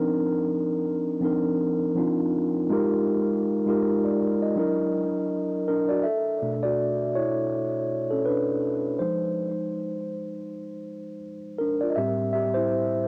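A mellow, clean tine electric piano plays alone and up front through tape echo and cassette tape color in a small, moderately reverberant room, moving through Cm11, Fm11 and Gbaug7 before shifting at 6.0 seconds to Bm11, Fm7 and Am7 in this sultry, late-night R&B fragment at 81 BPM with a gentle sixteenth-note swing.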